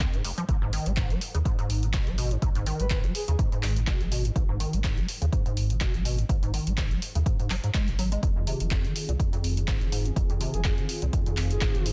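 Acid house at 124 BPM in 4/4, with a light swing on the sixteenths and a driving, raw mood, cut from a longer piece in F phrygian. A squelchy, resonant acid bass riff runs throughout with a filter sweep, its square-wave tone pushed through overdrive, analog chorus and tape echo and pumped by the sidechain. Beneath it sits a deep, thick sub bass that also pumps, while an electronic kick and a punchy analog drum machine with handclaps and hi-hat give the groove a tape-warm edge. A breathy, flute-like synth lead with a warbling vibrato drifts in the background in brief phrases, first around 2.8 seconds and again from 10.5 seconds, bathed in lush chorus and tape echo. At 8.2 seconds a detuned sawtooth pad enters on an Fm7 chord, soft-attacked and sustained under chorus and sidechain pumping. The sound is dry, with a dense, heavily limited modern master.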